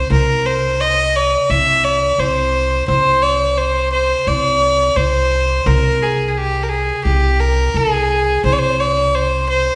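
A single bowed violin and a plucked upright bass begin together in this stately, festive Arabic piece in C maqam saba, moving at 86 BPM in a straight 4/4 with tuning set to A4 = 439 Hz. The violin carries the melody between G4 and E5 with a biting, nasal tone and an airy bow, sitting close and up front, while the woody, steel-strung bass holds a low C2 until 9.7 s. A long recital-hall reverb surrounds both instruments in a church or concert-hall space whose sound tops out near 10.9 kHz, and the clip ends at 9.8 s as a cut from a longer piece.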